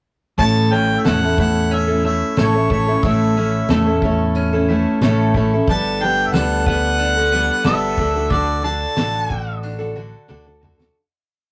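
Nostalgic and open-road in spirit, this short folk rock and heartland rock piece moves at a straight 91 BPM in 4/4, sitting in A mixolydian and passing from A to Gadd9 to D within a single verse. A harmonica carries the motif-based melody in song-like phrases with a light vibrato, punchy yet roomy, from 0.4 to 9.6 seconds. Beneath it, a full-bodied jumbo steel-string acoustic guitar strums sixteenths in open chord shapes, up front with an audible finger squeak, while a bright, twangy clean electric guitar picks arpeggios as a riff lower in the mix. A growly, amped fingered electric bass plays a dotted figure, and a damped 70s drum kit of hi-hat, kick, snare and toms gives a dry, dark rock groove with a fat snare, tight kick and rolled-off top. The rough rehearsal-room sound, with tube saturation and a short booth ambience, fades out from 8.3 seconds as a drum fill closes the piece at 11.0 seconds.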